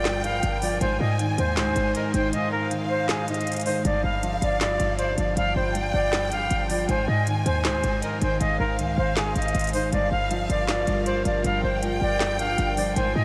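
Soaked in a huge ambient reverb with a roughly 8.1-second tail, this dreamy, eerie trap excerpt broods in G phrygian at 158 BPM with a half-time feel. A pure, vibrato-laden concert flute carries the melody through analog delay, while a lush, bowed violin section sings a second line above it, also trailed by delay. Underneath, a dark, mellow baby grand piano plays low accompaniment through analog chorus, and a punchy, tight 808-style bass with a fast attack anchors the bottom. The trap kit brings a woody snare, crisp hats and handclaps, roughened with vintage 12-bit sampler grit and re-recorded in a large room, and the kick drops out from 2.3 to 3.8 seconds. An airy, breathy pad with a slow attack and long release sits in the background, holding chords until 3.8 seconds and returning at 10.3 seconds as the harmony circles from Gm7 through Ab and back.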